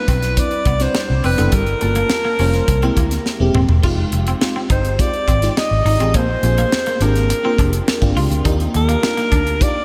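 This short excerpt of polished 1980s jazz-funk pop opens with a clear alto saxophone carrying the melody up front, its jazz-style phrasing marked by light vibrato and scooped notes, over an FM electric piano layered with a soft pad that is lush, detuned and gently chorused. A twangy electric guitar at the edge of break-up plays a picked riff beneath, dressed in a lush chorus, while a vintage foam-muted fingered bass sits dark, round and punchy, thickened by tube saturation. A tight funk drum kit, its snare high-tuned and its kick punchy and tight, drives a straight 4/4 feel, and the drums break into a fill between 3.3 and 3.8 seconds. The harmony moves through rich chords such as Cmaj9, Fm7 and Ebmaj9, giving the slick groove a bittersweet tint. A moderate, lush hall reverb soaks the mix, lending the whole passage a dreamy, glossy sheen.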